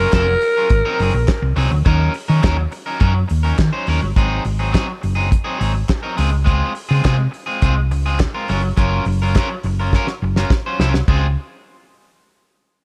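Disco at 104 BPM in Db major with a celebratory, glamorous mood, this cut opens with a growling, breathy tenor saxophone playing a raspy, scooped jazz-style line for its first 1.6 seconds, over a twangy, slightly broken-up picked electric guitar, a round, hollow-body fingered electric bass up front, and a dry, damped 70s drum kit with a fat snare, tight kick, dark cymbals and handclaps that plays a fill from 9.9 seconds, all moving through chords such as Ebm7, Ab7 and Dbmaj7 in a studio ambience.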